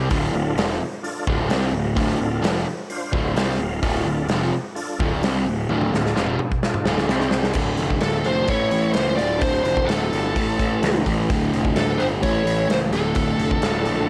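A straight 4/4 groove at 129 BPM drives this heavy, smoky slice of blues rock and southern rock in D minor, with a big acoustic drum kit (punchy kick, medium-tuned snare, rolled-off top) pushing under a crunchy, double-tracked guitar riff and a growly fuzz bass. A gritty, percussive tonewheel organ with fast rotary and chorus vibrato holds thick chords in the background, adds a short fill and a plate-reverb sheen, then drops out at 7.5 s as a drum fill winds down and the music shifts to D harmonic minor over a Dm-A progression. At 8.0 s a smooth, up-front lead guitar with plate reverb takes the melody, shadowed by a very quiet second lead line beneath it, all set in light, small-room ambience.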